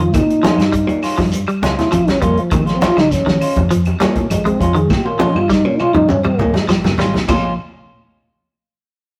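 Afrobeat at 101 BPM in Bb dorian, funky and hypnotic over a Bbm7 chord, where a veiled, breathy bucket-muted trombone solos close and intimate with scooped notes until 6.9 seconds, above twangy, slightly broken-up picked guitar arpeggios, clean hollow-body stabs from a semi-hollow guitar, round fingered electric bass and a tight acoustic soul drum kit with dark cymbals that plays a fill from 4.9 seconds, while low-tuned ringing congas, grainy shekere and distant woody claves sit in the background, all in a rough rehearsal-room recording with moderate stone-room reverb.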